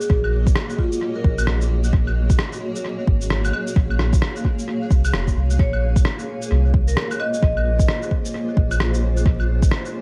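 Ghostly and wistful, this future garage fragment, cut from a longer piece, sways on a swung 4/4 groove built from an up-front, overdriven electronic kick and a round, soft dub sub bass that pumps against it, while a muffled, pitched-down patter of electronic shaker, claves and rim click drifts through tape echo. A cloudy, detuned granular pad holds blurred, evolving chords from Gb6/Bb to Bbm7 across the full 10 seconds. A ringing vibraphone with medium hard mallets sounds brief airy phrases at 0.0 and 5.6 seconds that trail off in dub echo, all set in an echo-heavy mix with vinyl crackle and faint mains hum.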